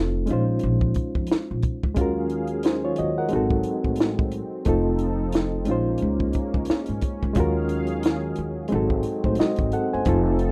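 Sultry and soulful, this short neo-soul and R&B cut sits at an unhurried 89 BPM in 4/4, its sixteenths carrying a gentle swing in Eb dorian. A reedy, clean electric piano with a fast tremolo carries the accompaniment from the first moment, sitting up front alongside a woody, pizzicato upright bass with steel strings and a dark tone. At 0.3 seconds a compact cocktail drum kit enters, acoustic and dry with a rolled-off top, pairing a high-tuned snare and punchy kick with hi-hat. From 2.0 seconds a sawtooth analog pad adds soft-attack sustained chords, its detuned voices thickened by chorus and set lower in the balance. The harmony circles through Bbm11, Ebm11, Ab7b9 and F7 before returning to the minor eleventh chords. Light reverb and a rough home-demo mix give the whole thing an intimate, unpolished feel.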